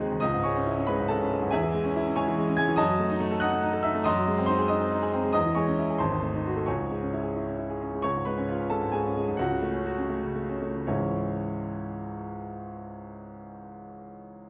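Set in a moderate recital-hall reverb with a dark production, a clear, open grand piano sits up front, its notes ringing with long sustain across a range from G#1 to G#6. This agitated, passionate classical piece is a virtuoso study in C# minor, heard in a short cut from a longer work. It moves in a rubato 6/8 at roughly 75-95 dotted-quarter beats per minute, slowing between 7.4 and 10.9 seconds as the harmony turns toward C#7 and F# minor before settling back on C# minor.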